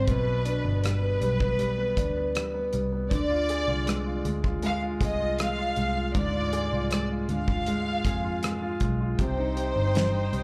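Heartbroken and melancholic, this excerpt from a straight-feel pop ballad at 79 BPM in 4/4 pairs a lush, vibrato-rich violin section melody with clear concert grand piano chords carrying a slapback echo, a round, foam-muted fingered electric bass, and a dry, tight 70s drum kit with a fat snare and rim clicks, all heard as a live gig through a club PA with reverb, moving from G to Ddim before a soft, floating sul tasto string section enters in the background at 9.2 seconds on Cm.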